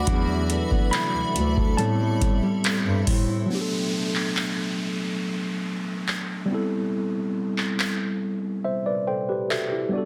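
Longing and moody, this contemporary R&B excerpt moves at 70 BPM in A dorian, led by a worn, slightly out-of-tune tine electric piano with light overdrive that sits up front, takes a solo through the opening and adds a fill at 8.6 seconds. In the first section a mellow bass clarinet carries the bass with vibrato and a smooth subtone, while a fingerpicked steel-string acoustic guitar plays arpeggios through tape echo, a blurred granular cloud pad holds slow-blooming chords in its own reverb, and a very quiet, woody FM pluck adds chorused texture. All four fall away around 3.5 seconds as an electronic downlifter enters, leaving the piano over a booming analog drum machine with deep kick, metallic hats and handclaps in a roomy, dense, heavily limited modern mix.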